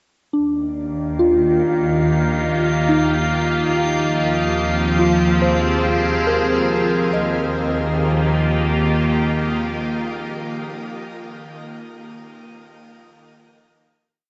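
Opening at 0.3 s with a soft FM synth bell tracing three slow arpeggio loops of unequal length that drift against each other through chorus, phaser and tape echo, over a dark, con sordino bowed double bass section holding the Eb2 root, this serene, luminous ambient piece at 71 BPM in Eb major soon gains an up-front, detuned, warbling wavetable pad of slowly shifting sustained chords and, from 1.5 s, a glassy held high note in the background, moving from Ebmaj7 to Fm7/Eb before settling on a final Eb chord at 7.1 s, the mix bathed in a wet shimmer reverb and the dulled top of cassette tape.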